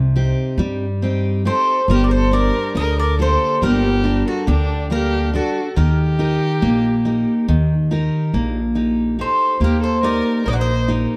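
Greek folk in a straight 9/8 at 140 BPM, this wistful, melancholic fragment of a longer piece opens with a full-bodied picked steel-string acoustic guitar and a woody, thumpy pizzicato upright bass up front over a Cm, Gm and Eb progression. At 1.5 seconds the metallic, double-strung bouzouki takes the melody while a bowed violin with vibrato and a smooth top adds a focused second line beneath it. Light reverb and a dark, warm production give the small band an intimate, brooding glow.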